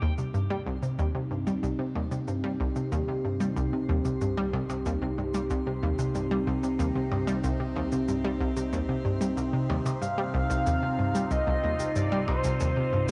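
Ambient, sequencer-driven space music with an expansive, cosmic mood, cut from a longer piece and held on a single C minor chord throughout. An up-front analog pluck carries the riff from the very start, its detuned sawtooth and square-wave tone given a round, bright edge by chorus and tape echo. Beneath it, a fat, wave-folded analog bass sits in the background with a saturated filter sweep, while an evolving wavetable pad morphs through sustained chords, colored by phaser and its own reverb. A twinkling granular texture with an octave-up shimmer fades in high above, and electronic shaker and percussion blips, re-recorded in a small room, fade in with tape echo. At 10.0 seconds a shimmering, retro pulse-width lead enters up front with the melody, detuned and chorused, all within a dark production and a moderate plate reverb.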